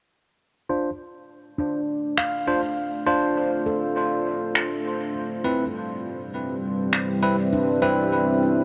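Spacious and hazy, this ambient dub excerpt drifts at 101 BPM in 4/4 with a light swing on the sixteenths, sitting in D dorian as the harmony moves from Dm7 to Cmaj7 at 5.1 seconds. A barky, bell-like tine electric piano opens with bright, clean stabs at 0.7 seconds, run through a low-pass filter that sweeps across the passage and a dub echo. A stainless-steel handpan follows with ringing, meditative arpeggios, its sharp finger strokes set in the background under its own filter sweep and dub echo. A deep, moody pad fades in with sustained chords, its detuned sawtooth and sine layers, sub octave, wave-folding and ring modulation softened by slow attack, long release, chorus and built-in reverb into a mellow bed. Overdriven electronic finger snaps sit up front from 2.2 to 7.1 seconds, carrying the grit of a small room, while a huge ambient reverb with a long tail and a dark top end wraps the mix in haze.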